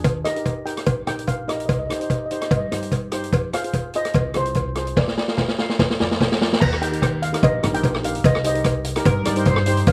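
A shimmering, close-miked steel pan carries the melody over a bouncy, sunny calypso groove at 146 BPM in Eb major, with a second, mellow pan in a boxy small room supplying accompaniment, both touched by slapback echo. A woody, dark pizzicato upright bass and an up-front street-band drum kit with a boomy kick and rolled-off top drive the lightly swung feel, joined by a metallic cowbell, and the drums play a fill from 5.0 to 6.6 seconds. A distant, punchy horn section with light vibrato enters briefly at 9.1 seconds near the end of this short cut from a longer piece.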